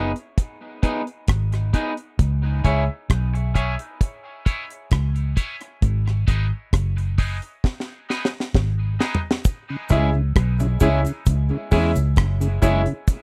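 Deep and hypnotic, this slow dub reggae excerpt at 66 BPM in C# minor opens on a break and a filter sweep, with dry, up-front drums featuring a high-tuned snare and tight kick alongside a dark, foam-muted, punchy bass, while a slightly broken-up, twangy electric guitar drifts through dub echo. A brilliant grand piano adds echoed stabs from 2.6 seconds, and after a drum fill the second section at 9.4 seconds brings in a background cabasa and a mellow tonewheel organ with key click, chorus vibrato and slow rotary speaker. The close, dry 1970s-style studio sound keeps the groove intimate as the chords move between G#m and C#m.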